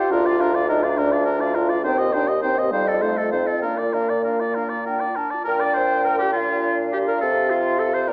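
A close-miked French horn with a mellow tone and light vibrato supplies accompaniment in this dramatic, stormy fragment of a quick classical-period wind quintet movement in Bb major and 6/8, taken at 65-70 BPM in dotted quarters with a rubato feel, as a pure, wooden flute carries the melody in the background, a clear oboe sings the second line, a distant, roomy clarinet fills in the accompaniment, and a warm bassoon holds the bass from 0.1 seconds, the quintet sounding through a wet recital hall reverb and worn, warbling cassette tape with pitch drift and a small speaker sound.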